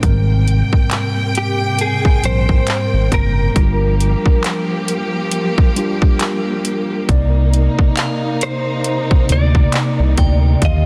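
A smooth synth bass sits up front with a dark, ring-modulated edge, anchoring this tender, dreamy contemporary R&B excerpt alongside a trap drum kit of hard-clipped kick, metallic hi-hats and handclaps under a swung sixteenth feel. A mellow tine electric piano and a lush, bowed string section carry the Abmaj9, Gm7 and Cm9 harmony, while a clean, direct-recorded electric guitar enters with the melody at 1.4 seconds, coloured by ensemble chorus and tape echo. At 8.0 seconds a crystalline FM synth bell adds a faint texture in the background, set in a digital ambience with a dense, heavily limited modern master.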